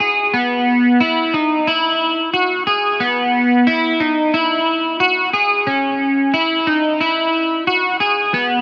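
The recording sits in a huge ambient reverb with a 4.2-second tail, so every note hangs in a vast, misty space. This short dream pop fragment, cut from a longer piece, has a floating, dreamy mood and a straight 4/4 feel, tuned slightly below standard pitch. A lone electric guitar plays from 0.0 to 8.6 s, staying between B3 and G#4. Its tone is twangy and slightly broken-up, played with the fingers and placed up front in the mix. Analog chorus adds a shimmering sheen to the guitar, while digital delay scatters echoes of it into the reverb, deepening the hazy, suspended atmosphere.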